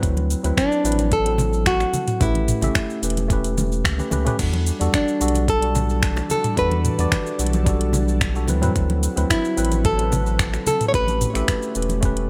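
Lightly reverberant and smooth, this wistful sunset chillout excerpt sets an up-front, fingerpicked nylon-string guitar melody with delay, entering at 0.6 s, over a worn, slightly out-of-tune tine electric piano with its own delay, a deep, round sub bass with tube saturation, a gritty, thumpy overdriven electronic kick, a tape-toned R&B kit with metallic hats and a fill at 3.6 s, and background congas and bongos, while a bright, ethereal pad with chorus and phaser joins at 5.8 s.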